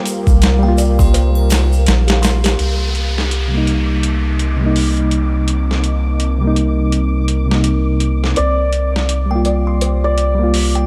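A swung 83 BPM trip hop groove in C minor, built on a gritty, overdriven boom bap sampler-style kit with a thumpy kick, sets a melancholic, smoky mood over a round dub sub bass, reedy electric piano with tremolo and tape echo, a dark chorused pad and a flickering grainy texture, while a distant tube shaker and triangle and a tinkling, slightly out-of-tune music box open the piece, an electronic downlifter fills the middle from 2.6 seconds, and a shimmering, hammered santur melody arrives at 8.4 seconds with dub echo as the music box returns.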